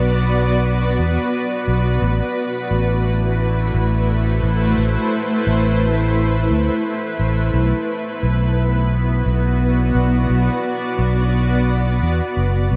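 From the opening moment, a granular cloud pad and a fingered electric bass sound together, setting a spacious, meditative ambient dub mood in 4/4 with a gentle swing on the sixteenths. The pad holds sustained chords in a blurred, cloudy haze, its slow attack and long release letting each chord bloom and linger while its grainy texture keeps evolving beneath its own built-in reverb. Sitting up front, the bass is growly and amped, anchoring the low end with a warm electric tone. The harmony moves from Bm to Am69 at 2.0 seconds, then returns to Bm at 7.5 seconds. A huge ambient reverb with a long tail surrounds the whole mix, giving this short excerpt from a longer piece a deep, immersive sense of space.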